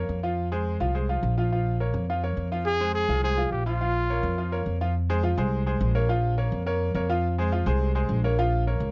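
A straight 4/4 pulse at 210 BPM drives this fiery salsa fragment in F minor, cut from a longer piece and running just under nine seconds. Throughout, a bright grand piano accompanies in the middle register while a woody, pizzicato upright bass with steel strings holds the low end, both sitting up front. The harmony rocks steadily between Fm and Bbm, carrying from the first section into a second at 5.0 seconds. A clear, punchy trumpet steps forward as the soloist from 2.7 to 4.6 seconds, playing a brief pop-style line with scooped notes and a smooth top. The piano is intimate and present enough that its action noise can be heard. Recorded almost dry, the whole track has the worn, warbling character of old cassette tape, with a warbly pitch drift that gives its driving energy a faded, vintage edge.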